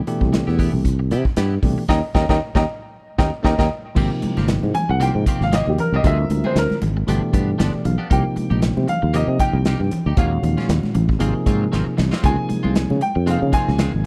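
A lightly swung sixteenth-note groove at 116 BPM in 4/4 drives this soaring, slick slice of electric jazz fusion, anchored by an up-front modern studio drum kit with a punchy kick, medium-tuned snare, hi-hat and crash in a pumping room. A growly, bright fretless bass sits prominently beneath, while a bell-like tine electric piano comps cleanly in the background and a twangy, compressed clean electric guitar adds picked stabs colored by analog chorus. After an opening on Cmaj7, the band hits an accent on Eb7 at 1.9 seconds as a clear baby grand piano enters with the melody, its intimate, slightly worn tone carrying audible action noise and short sustain. From 4.0 seconds the music settles into Ab major and the grand piano takes a solo over a richer progression through chords such as Dm7b5, Ebm9 and Ab13 to Dbmaj9. Damped, thin-skinned congas join far back in a large room, and brief electric piano and drum fills punctuate the phrases, all within a small room reverb.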